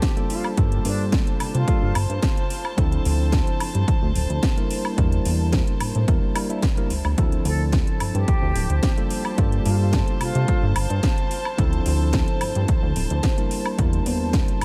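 Sensual and sleek, this nu-disco excerpt moves at 109 BPM in a straight 4/4 groove in D minor, cycling through Gm9, Dm7 and Em7b5 chords. An overdriven electronic kick sits up front with a punchy weight, joined by a house kit of cracking snare, metallic hats and woodblock, both re-recorded in a large room for an overdriven, layered edge. A chorused synth bass enters at 0.6 seconds, retro and glossy, its pulse-width, sawtooth and ring-modulated tone shaped by a filter pluck into a dark line with sidechain pumping. A clean tine electric piano carries the accompaniment through its built-in speakers with delay and sidechain pumping, while a rich chamber string section holds sustained chords with a gut-string, reedy period tone roughened by vintage 12-bit sampler grit. An airy, distant concert flute with vibrato floats brief expressive melody phrases at the opening and again from 7.5 seconds, carried by delay, and light reverb ties the whole mix together.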